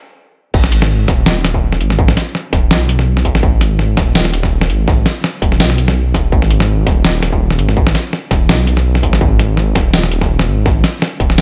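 A light reverb and a high-pass filter shape this short, heavy, cinematic cut of half-time drum and bass, which opens on a brief silence before the drop lands at 0.5 seconds with a gently swung sixteenth-note feel. Up front, a dark detuned saw bass rumbles low with a beating, sustained tone and a fast attack. Beside it, a gritty, pitched-down, compressed sampler-style kit sets a medium-tuned snare, hi-hat and crash cymbal in a small room, while a distorted electronic kick punches underneath.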